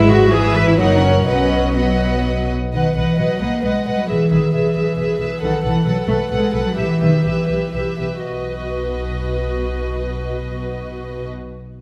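A wet recital-hall reverb and lossy compression artefacts surround this lively, spirited fragment of a quick classical-period movement for string orchestra in B major, in 3/4 at 114-137 BPM with a rubato feel that slows between 4.8 and 8.3 seconds. A floating, pure violin section carries the melody sul tasto over a darker, vibrato-tinged second violin line, while a close, intimate viola section supplies soft-attack accompaniment. The smooth-topped cello section and an up-front, dark double bass section share the bass, moving through harmonies that settle on B at 8.3 seconds.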